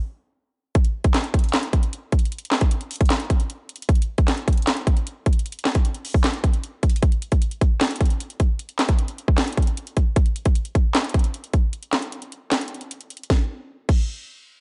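Eerie and menacing, this short hip hop excerpt moves with a half-time feel. After a brief break, a trap drum kit enters at 0.8 seconds and plays until 14.0 seconds. The electronic kit sits up front, with a hard-clipped kick, a sharp snare, metallic hi-hats, handclaps and crash cymbal. The production is dark and rolled off at the top, wrapped in light reverb and a digital ambience that deepens the unsettling atmosphere. The music shifts sections at 7.0 seconds and again at 13.3 seconds, and the excerpt is cut from a longer piece.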